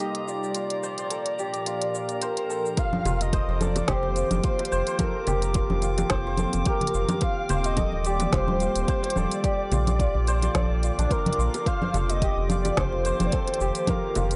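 This peaceful, earthy organic downtempo cut opens mid-flow at 108 BPM in 4/4, with a breathy, flute-like synth lead carrying the melody over a warbling, nostalgic tape-like pad, bright hammered santur arpeggios and a drifting, glassy harmonics texture high in the background. A filter sweep runs across both the santur and the pad through the opening seconds, while an organic electronic kit with a woody snare, smooth hats, cabasa and congas plays along with a lightly swung sixteenth-note feel. At 2.8 seconds a deep, layered electronic kick arrives, and at 3.1 seconds a round, dark analog bass with tube saturation steps up front alongside ringing, close congas and bongos. The harmony in F mixolydian moves between F7sus4, Bbmaj7 and Eb6, with the pad's chorus, phaser and sidechain pumping giving it a lo-fi sway, and the lead's ensemble chorus and tape echo adding a vintage softness. Overdrive roughens the kit and kick, and the whole recording sounds dry and gritty, with transformer saturation and a dulled top end.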